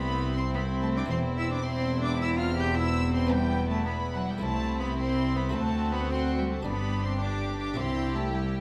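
A straight 4/4 pulse at 108 BPM drives this lively, festive baroque-style concerto movement, a brief cut from a longer piece that opens in C major and turns toward G major at 3.3 s. A single close, rich cello carries the melody alongside a nasal, dark violin section set high above it, both with a period-style gut-string tone. Around them, a chamber violin section with light vibrato adds a smooth second line, while a shaded viola section fills the middle, and a muted, lute-like buff-stop harpsichord plucks a very quiet, dry accompaniment. The bass rests on a reedy double bass section paired with a warm chamber cello section. Every part sounds from the start to 8.6 s, and a wet recital hall reverb surrounds the ensemble.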